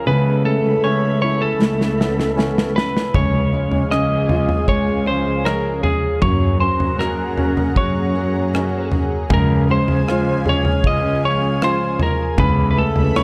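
Steady, straight 4/4 rhythm drives this heartfelt, hopeful pop ballad excerpt, with a tight, up-front studio drum kit entering at 1.6 s on a fill of kick, rim click, snare and toms before settling in. A lightly driven electric lead guitar, slightly broken-up and compressed, carries the melody up front over a clear, polished baby grand piano in the background, a very quiet fingerpicked jumbo acoustic guitar playing arpeggios, and a dark, intimate chamber cello section bowing the bass sul tasto with light vibrato. A lush, detuned sawtooth-and-square unison pad with chorus and phaser sustains chords throughout, all set in a light studio reverb.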